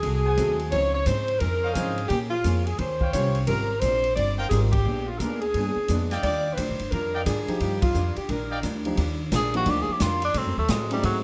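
Energetic and swinging, this big band swing excerpt opens with a clear, close-miked saxophone section carrying the melody with vibrato and plate reverb, while a clear trumpet section adds tight, soft-attack stabs and the band hits accents at 4.7 and 7.8 seconds over rich chords such as Ab7b9 and Dbmaj9. Underneath, a woody, thumpy pizzicato upright bass sits up front beside a natural studio drum kit with a punchy kick and ride cymbal, a dark, clean hollow-body archtop guitar comps quietly, and a grand piano drops in and out. At 9.0 seconds a bright tenor saxophone takes a solo with scooped notes and vibrato, all set in a moderate large studio reverb.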